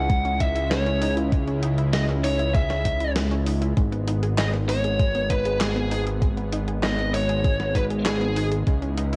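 A driving, moody synthwave excerpt in G# minor at 98 BPM opens on a biting, overdriven lead guitar melody up front with cassette tape and tape echo, over a fat, sawtooth analog bass and a lush, chorused unison pad, both pumping with sidechain, and a bright, punchy unison pluck arpeggiating through analog delay in the background, while from 0.1 s a thumpy, tape-colored electronic kick and a gated 80s digital drum machine of handclaps, hi-hat and gated-reverb snare join in, the guitar falling away at 8.5 s as the harmony moves from C#madd9 to G#m in the light digital ambience of a home cassette recording.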